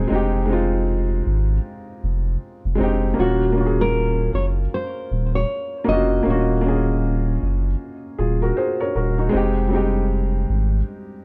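A fingerpicked nylon-string guitar carries the melody from 3.2 to 7.4 seconds, full-bodied and softened by a low-pass filter, plate reverb and tape echo, in this hazy, melancholic lo-fi hip hop excerpt at 78 BPM with a swung 4/4 feel in Eb dorian. Beneath it, a felt-muted upright piano gives mellow, boxy accompaniment with audible action noise, while a round, saturated sub bass holds the low end until 10.8 seconds, over chords moving from Fm7 to Ebm7 and back. The whole recording sits in light reverb with the worn, warbling pitch drift of old cassette tape.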